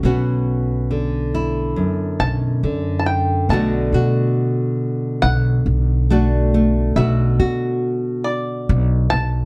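The upright bass stands out most, up front with a woody, thumpy pizzicato tone from its gut strings, anchoring this short cut from a longer acoustic folk piece for a small band at a relaxed 69 BPM in 4/4 with a straight feel. Beside it, the nylon-string guitar is fingerpicked and full-bodied, also placed up front, with a bright, deep classical voice and audible finger squeak as it carries the accompaniment. The bluegrass banjo enters at 2.2 seconds to take the melody, its fingerpicked notes mellow yet twangy and percussive, sitting a touch further back. The harmony moves from Bmadd9 to Bm7 at 3.5 seconds as the music passes into its second section. Light reverb and a dark production give the whole a nostalgic yet hopeful mood.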